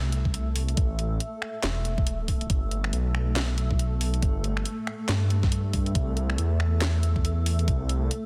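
Heavy and brooding, this deep dubstep excerpt moves at 139 BPM in a half-time feel with swung 16ths, its chords shifting from Am to G at 2.5 seconds and C at 6.0 seconds. A dark, detuned sawtooth bass rumbles and beats up front with tube saturation, while a mellow granular cloud pad holds blurred, evolving chords with a slow attack in its own reverb. A knocking, tape-warm electronic kick sits forward against a garage kit of finger snaps, handclaps, bright hats and a cracking, softly clipped snare, all within a dense, heavily limited modern master in a digital ambience.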